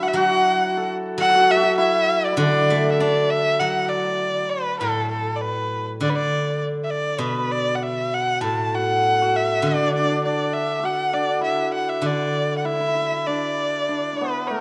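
A recital-hall reverb with a 1.8-second decay wraps this short cut from a longer piece of Chinese traditional chamber music in a wet space. The mood is graceful and pastoral, set in a D gong mode at 100 BPM in 2/4, though the pulse moves freely in rubato. Up front, a single bowed erhu carries the melody throughout with a rich, nasal, slightly boxy tone, its smooth, even line colored by vibrato and portamento. A steel-string zither, also close, is played with fingerpicks and gives a silvery, ringing accompaniment in its lower register until 13.9 seconds. Beneath the erhu, a hammered dulcimer adds a shimmering second line, dropping out at 6.1 seconds and returning at 8.4 seconds.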